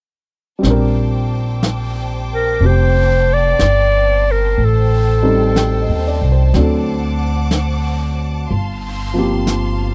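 From 0.6 s, a romantic, late-night jazz ballad in Bb major swings gently at 61 BPM, with a natural-sounding baby grand piano accompanying, a lush, bowed studio string section holding clear sustained chords up high, a woody, thumpy pizzicato upright bass up front, and a vintage brush kit of snare and hi-hat with a rolled-off top, while a breathy, up-front clarinet carries the melody with vibrato and scooped notes from 2.3 to 6.6 s over harmony moving from Bbmaj13 through Am7b5 and D7 to Gm11, in a dry, close 1970s-style studio sound.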